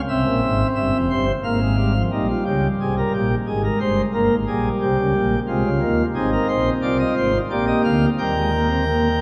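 A solo pipe organ, voiced on light, sparkling flute stops with a bright, romantic character, sits up front in this short classical cut taken from a longer piece. Written as a baroque-style four-part fugue in 3/4 at 89 BPM with a straight feel, the music feels driving yet solemn as its voices move through a range from F1 up to G5. It begins in F minor, passing through chords such as Fm/Ab, Bbm, Gdim and Fm/C before turning toward Eb major from 6.2 seconds, arriving on a Bb chord and then Eb. A new section begins at 2.1 seconds and carries the fugue to its cutoff at 9.2 seconds. The organ is bathed in a wet cathedral reverb with a long six-second decay, giving the flutes a lingering, spacious halo.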